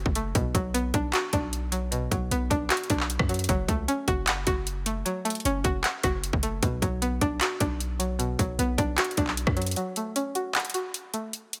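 Hip hop trap in F# minor at 153 BPM with a half-time feel, this brooding, hard-hitting excerpt sets a twangy, bright, chorused resonator pluck over a deep, boomy 808-style bass and an up-front electronic trap kit of hard-clipped kicks, metallic hi-hats, handclaps and rim clicks, moving between Bm and F#m in light digital reverb until the bass stops at 9.8 s for a short break.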